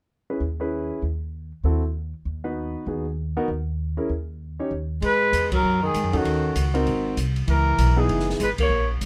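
A lightly reverberant, smoky small-group swing passage, cut from a longer piece, opens with clear, natural grand piano comping over woody, growly pizzicato upright bass. At 5.0 seconds a dark drum kit with a boomy kick and a rolled-off top joins, along with a close-miked tenor saxophone with vibrato on a second line, while a soft-attack, distant trumpet carries the melody up front. The cool bop harmony moves through minor-seventh and diminished chords, and the band hits accents at 5.5 and 8.6 seconds.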